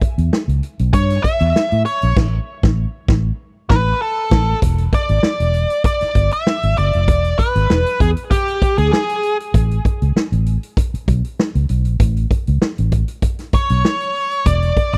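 The rhythm sits in a straight 4/4 funk groove at 98 BPM, set by an acoustic drum kit with a punchy kick, a medium-tuned snare, hi-hat and crash cymbal, its natural big-room character heard from the first moment. A dark, round, foam-muted electric bass joins at 0.2 seconds, playing fingered lines low in its register, and both parts stay up front through the whole cut. A nasal lead guitar with a parked wah, overdriven and picked, carries the melody from 0.9 seconds with a touch of tape echo, opening with a solo over a chordless stretch where the band punches accents before a brief silent gap at 4.0 seconds. From 4.6 seconds the music settles on E7 and later moves to Aadd9, with the guitar dropping out around 9.4 seconds and returning near the end. The mood is playful and gritty, and the dry, close, 1970s-style studio sound keeps every part immediate in this fragment of a longer piece.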